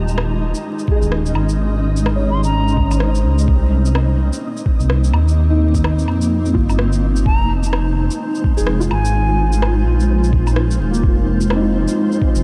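A ghostly, wistful slice of future garage in F minor at 127 BPM opens on a blurred granular cloud pad, a felt-muted upright piano with audible action noise sitting in the background, and a deep, rumbling detuned saw bass that stays up front, all breathing with sidechain pumping. A faint flickering grainy texture hovers behind them, while layered electronic shaker, rim click and woodblock, overdriven and gritty like an old sampler, arrive almost at once with a 16th-note swing. At 0.9 seconds a muffled, pitched-down kick drum thumps in, overdriven and compressed. The harmony moves from Eb7sus4 to Cm7 and then Fm7, and a hollow, airy concert flute with vibrato and delay appears briefly near 2.3 seconds before returning from 7.3 to 9.6 seconds. The whole mix is soaked in a huge ambient reverb with vinyl crackle, giving this cut from a longer piece a dreamy, haunted haze.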